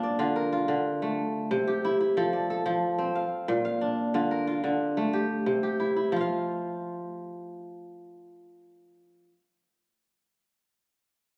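A phone recording made in a moderate recital hall, with club reverb and compression giving it a roomy sheen, captures a solo kora in a hypnotic, joyful West African traditional passage cut from a longer piece. At 121 BPM in a straight 12/8, the crisp, ringing, fingerpicked kora sits up front, its acoustic tone spanning Bb2 to F5 as it cycles through Dm, C, F and Bb. At 6.1 seconds the harmony drops away, and the instrument stops at 9.3 seconds.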